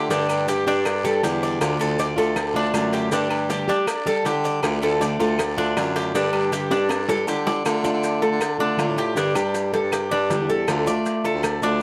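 Close, detailed and lightly reverberant, this danceable Cuban son and guajira excerpt in D minor at 159 BPM puts three parts up front: a warm, boxy, picked parlour steel-string acoustic guitar with audible finger squeak, a bright, metallic Cuban tres playing arpeggios on doubled strings, and a clear, smooth-topped baritone saxophone carrying the bass line. Beneath them sits a quiet bed of round, low-tuned cowbell, ringing agogo bells and timbales, woody claves, grainy maracas and a raspy guiro that stops at 7.7 s, while a drum fill from 6.7 s leads into a second section that, like the first, alternates Gsus2 and Dm chords.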